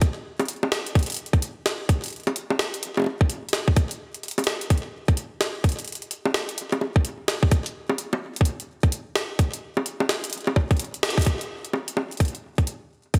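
IDM with a glitchy, intricate mood, this short cut from a longer piece rides a swung 4/4 groove built entirely from drums. An electronic kick drum sits up front with a tight, tape-warm punch, its sound re-recorded in a large room and given studio reverb. Alongside it, a jungle sampler-style drum kit supplies bongos, hi-hat and a high-tuned snare, compressed, pitched up and gritty, carrying both studio reverb and a digital delay. Both parts play from the start through to 13.2 seconds, and a drum fill and band accent at 11.0 seconds lead into a brief closing section at 11.3 seconds. The overall sound is dressed in light reverb and a digital ambience.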